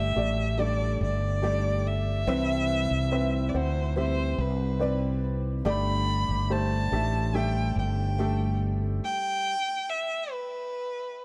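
A slow, straight 4/4 pulse at 71 BPM carries this hopeful, emotional pop ballad fragment in G major, as a full-bodied picked steel-string acoustic guitar ripples arpeggios in the background, a natural-sounding baby grand piano plays accompaniment, and an up-front fretless electric bass holds the low end over a Gsus2 to Cmaj7 and back progression. Above them a single bowed violin, smooth and focused with vibrato, sings the melody up front. The band stops around 9.0 seconds, with the guitar ringing on to about 9.5 seconds, and the violin carries on until 11.2 seconds, all within a dark production and light reverb.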